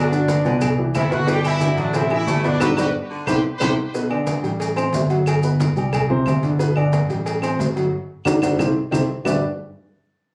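Festive and danceable, this salsa cut, taken from a longer piece, moves at 180 BPM in a straight 4/4 in G major, with chords built mostly on Gmaj7, Cmaj7 and Am7. A clear trumpet section carries the melody with light vibrato and a tape echo, while a raspy, gritty baritone saxophone adds a second line in the background, both sounding distant and roomy before they stop near 3.8 seconds. A woody upright piano sits up front with short sustain, and a dark, round, punchy fingered electric bass holds the low end through the whole 9.4 seconds. The percussion fills out the groove: bright, low-tuned congas, grainy maracas, tight high-tuned cowbell and bongos played with soft hands, ringing metal-shell timbales and agogo bells with a vintage, band-limited tone, and saturated, compressed claves entering at 0.6 seconds. Drum fills and band accents mark the ends of phrases, and the recording carries a club-like reverb, as if captured on a phone in the room.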